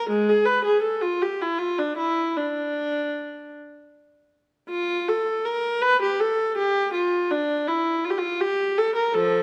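A lone bowed viola with a reedy gut-string tone and smooth top opens this solemn, grave fragment of a baroque-style suite movement in D minor, played up front in period style at a free, rubato 49-56 BPM in 6/8, moving into a second section at 4.7 s, all within a moderate recital-hall reverb.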